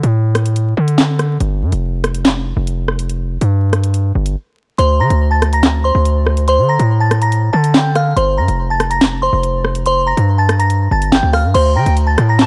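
Dark and menacing, this half-time drill hip hop excerpt moves at 142 BPM in D minor. A distorted 808-style bass sits up front, heavy and saturated with a noise layer over its sine body, its notes hitting with a fast attack before decaying across a low range. Beside it, the electronic drum kit is equally forward, with a sharp snare, bright hi-hats, handclaps, rim clicks and crash cymbals. After a break that runs to 4.8 seconds, a glassy synth bell enters with a crystalline, warbling vintage FM tone, its chorus and digital delay setting the melody high above the chords as they move from D5 to Gm. At 11.8 seconds a breathy silver concert flute slips in behind, close-miked with a straight, tongued tone. The dark production is wrapped in digital ambience and a layer of vinyl crackle.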